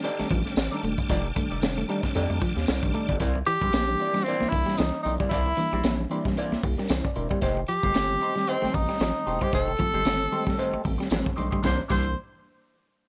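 A swung sixteenth-note groove at 114 BPM drives this playful, energetic funk excerpt, anchored by a crunchy breakbeat kit with a punchy kick, high-tuned snare and dark cymbals, its saturated, gritty sound sitting up front with a rolled-off top. A round analog bass with a fast attack and deep, wave-folded tone joins almost at once, while a jingly tambourine adds close, dry shimmer. A dark, clean hollow-body jazz guitar comps through a wah and plate reverb, and a slightly broken-up, twangy electric guitar keeps a riff going in the background. A mellow, reedy electric piano pulses with fast tremolo on its stabs, and a bright tonewheel organ with key click and fast rotary speaker holds sustained chords over an F13 opening until 3.2 s. From 3.5 s a breathy tenor saxophone takes the lead up front, its jazz-style line marked by scooped notes, vibrato and a soft attack, as the harmony moves between C9 and F9 in a light reverb.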